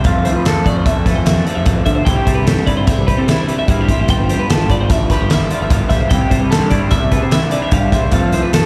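Set in a straight 5/4, this wistful, bright slice of math rock and midwest emo rides a loose indie drum kit with a fat snare and punchy kick sitting up front, while a dark, round overdriven picked bass anchors the low end. A clean twelve-string electric guitar spins compressed, bright arpeggios through digital delay and slapback echo, a twangy fingered electric guitar adds scooped accompaniment with spring reverb, and a lo-fi, double-tracked garage guitar grinds out an overdriven riff coated in phaser. Heard as a live gig through the venue's PA with a recital hall's reverb, the harmony moves through Fmaj7, C6, G7sus4 and C6 before landing on F near 8.1 seconds.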